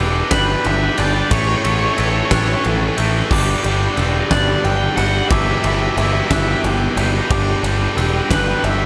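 A huge arena drum kit drives this soaring, euphoric post-rock passage in 6/8, entering at 0.3 seconds with a punchy kick, fat snare and bright crash and ride cymbals, all up front in a pumping hall sound. A growling picked electric bass, overdriven and amped, also sits up front and anchors the low end. Two distorted guitars play riffs further back, one low and compressed, the other tight and higher, while a crunchy lead guitar carries the melody through a digital delay. A metallic glockenspiel struck with soft plastic mallets rings out arpeggios high above, also echoing through delay, and a lush, clear string section holds very quiet bowed chords with vibrato. The harmony moves between Gmaj7, A7 and Em7/G beneath a generous studio reverb, in a passage cut from a longer piece.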